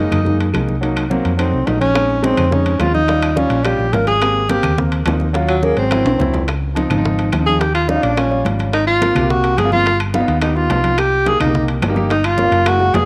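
A mellow tenor saxophone solos up front from the start with light vibrato and scooped notes, over warm grand piano and a dark, round, punchy hollow-body electric bass in this lively, sophisticated Afro-Cuban jazz excerpt in Ab major at 212 BPM. Ringing metal-shell timbales, thick-skinned congas in the background and very quiet woody claves join almost at once, with tight, high-tuned bongos entering softly at 2.0 seconds. A drum fill at 5.9 seconds leads into a second pass through the richly extended jazz harmony, all set in a light, small-room reverb.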